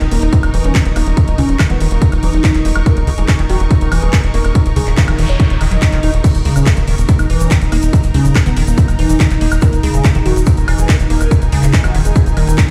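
Hypnotic and intense, this psychedelic trance excerpt drives along at 142 BPM in a straight 4/4. A heavy, tape-warm electronic kick sits up front from 0.3 seconds alongside a techno kit of crash, handclaps, woodblock and metallic hats, while a tight, punchy sequencer bass drives low and up front. Above it, a squelchy, resonant acid bass riff runs through a constant filter sweep, coloured by phaser, tape echo and sidechain pumping. A thick, detuned unison lead carries the melody with the same phaser and echo treatment, and behind it sit an evolving, morphing wavetable pad and a lush bowed string section with vibrato. A noise sweep moves through the background between 4.8 and 6.2 seconds, after which a grainy egg shaker enters, and the whole mix sounds as if played on a big sound system in a bare stone room.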